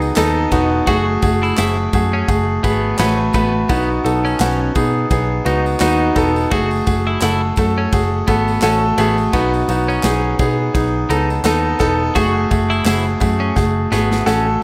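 An 85 BPM groove in 4/4 with a light sixteenth-note swing carries this uplifting, anthemic piano-driven pop fragment, cut from a longer piece. A clear, polished concert grand sits up front as the main accompaniment, its deep bass and short sustain spelling out an alternation between B and F#madd9. Underneath, a vintage muted picked electric bass adds a dark, round, foam-muted low end, while a modern studio drum kit with a punchy kick, medium-tuned snare, bright ride cymbal and handclaps drives the beat, closing with a fill at 13.6 seconds. A compressed, twangy twelve-string electric guitar rings out a bright, clean picked riff, and a jingly tambourine shimmers in the background. The whole mix is dreamy and soaked in plate reverb over a small room ambience.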